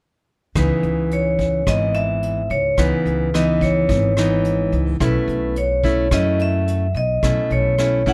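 A ringing, metallic vibraphone, struck with medium hard mallets and the motor off, carries a dark, smooth melody up front in this intimate bossa nova excerpt in C# minor at 108 BPM. A full-bodied, fingerpicked nylon-string guitar with audible finger squeak shares the foreground, while a woody, thumpy pizzicato upright bass on gut strings sits beneath, joined by a soft vintage brush kit with a punchy kick, hi-hat and rim click. The close, dry recording moves from C#m9 to B9sus4 at 5.0 seconds.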